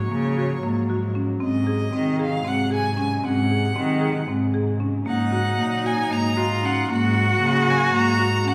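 In a straight 7/8 at 230 BPM in eighths, this hopeful, playful piece of contemporary chamber music in Ab mixolydian, cut from a longer work, sets woody padauk marimba arpeggios and an up-front, veiled, muted cello bass beneath a clear, distant bowed violin melody with vibrato. A dark studio string section sits in the background with soft-attack sul tasto chords moving through Gbmaj7, Ab7, Ebm7/Ab and Gb/Ab, and at 5.1 s a bright, biting cello enters with an intense second line. The ensemble is heard in a church or concert hall with moderate reverb lasting 1.8 s.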